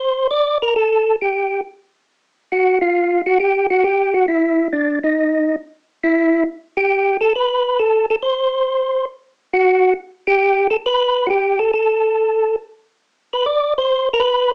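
Swung eighth notes in 4/4 carry this soulful, bluesy jazz fragment, cut from a longer piece. A percussive tonewheel organ plays solo for the whole 14.5 seconds, sitting up front in a range from D4 to D5. Its tone is mellow, round and dark, with a clean, percussive attack from third harmonic percussion, shimmering through chorus vibrato and a fast rotary speaker. The passage moves into a new section at 6.0 seconds. The recording has a moderate club ambience and a small speaker sound.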